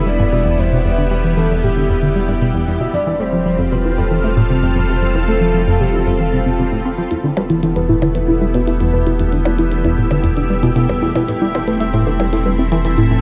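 A dark, warm mix bathed in a lush hall reverb frames this hypnotic stretch of ambient, sequencer-driven space music, where a tight, detuned sequenced synth riff drives beneath a vintage string machine's sustained chords, a deep sub bass and a pulsing gated texture glimmering in the background. A soft octave-layered lead with tremolo, vibrato and tape echo carries the melody until 6.8 seconds, and at 7.1 seconds a gentle, round pluck takes up arpeggios alongside clicky electronic hi-hats and percussion blips. The expansive mood holds as the chords move from Em to F/E and back, closing on Am/E.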